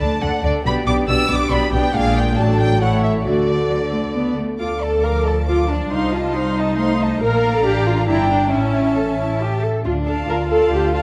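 A quick classical-period movement for string orchestra in 3/4 at 137 BPM, this spirited, graceful excerpt from a longer piece opens in D major and turns to D minor at 4.6 s. A rich violin section carries the melody with vibrato and expressive portamento, while a second violin section plays a warmer line with light vibrato, a gentle attack and an intimate sul tasto tone. Underneath, a lush viola section supplies smooth, even accompaniment and sits forward in the balance. The cello and double bass sections share the bass, the cellos smooth and rich, the basses mellow and up front with a rounded top. All five sections play throughout, set in a moderate concert hall reverb with a dark, warm production.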